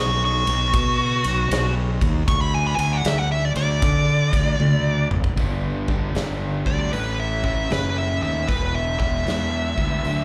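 Driving and gritty, this short cut from a longer blues rock and southern rock performance swings at a relaxed pace, heard as a live club gig through the venue's PA with a roomy club reverb. A nasal lead guitar with a parked wah takes a solo from the start until 5.4 seconds, its overdriven tone up front and coloured by slapback echo and analog delay. Beneath it, a fuzzed, fingered electric bass sits dark, round and punchy, while a big acoustic drum kit with bright cymbals, a medium-tuned snare and a punchy kick comes in at 0.5 seconds and rolls through a fill just before the second section. At 5.4 seconds a crunchy, double-tracked overdriven guitar enters with a bright picked riff as the harmony moves through G, A and E.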